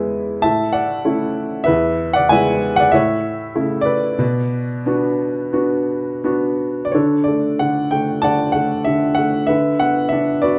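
The recording places a single upright piano up front in a recital hall, with moderate reverb that lets each phrase ring briefly before fading. This short classical excerpt is a lyrical solo piano piece in 4/4, taken with rubato at a tempo that moves between 79 and 97 BPM, in a cool, moody vein. The piano's tone is woody, smooth and vintage, with a short sustain, and it ranges from E2 up to A5. The opening passage sits in B dorian, moving through A, E, A and B minor. At 6.9 s the music shifts to D major for a second passage that settles onto a B minor chord over D before the fragment closes at 10.6 s.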